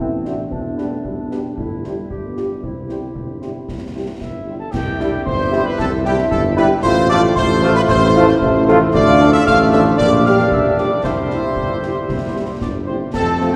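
Bathed in a wet cathedral reverb with a 4.4-second decay, this festive, proud military-style march for wind band strides along at 114 BPM in 2/4 and C major, cut from a longer piece. A clear trumpet section with light vibrato carries the melody over a mellow tuba bass, while a dark, distant woodwind section, a soft-edged euphonium and a roomy French horn section sit in the background, together with concert snare drum, bass drum and clash cymbals with dusky cymbal tone. An airy, close-miked wooden piccolo joins at 4.2 seconds, and a tight, vintage-toned trombone section adds sustained chords from 5.0 seconds.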